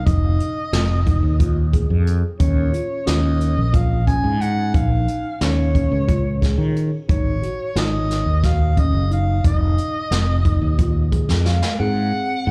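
A growly, bright fretless electric bass sits up front in this tense, driving excerpt of progressive instrumental band music in 7/8 at 179 BPM (eighths), in Eb dorian, while a jazz brush drum kit with a boomy kick and a distant, roomy sound pushes the groove until a fill at 11.3 seconds. A dark soprano saxophone carries the melody with classical-style vibrato, heard from afar with slapback echo and digital delay, over a mellow tine electric piano playing arpeggios through Fm7, Ebsus2 and Ab7sus4. A clean, compressed semi-hollow guitar slips into the background at 11.4 seconds, and the whole piece has the feel of a live club gig heard through the venue's PA.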